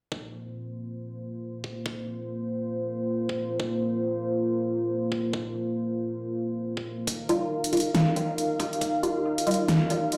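Deep dubstep with a heavy, dark, half-time swing: a moody, detuned sawtooth pad with a sub octave and chorus sustains chords up front from the start as an overdriven, knocking electronic kick thuds beneath it until 8.9 seconds, while from 7.1 seconds an overdriven kit brings a huge snare and bright hats, joined at 7.3 seconds by muted, nasal chord stabs with a moving notch, phaser and dub echo, all washed in a wet digital room reverb that sounds like a big system in a bare space.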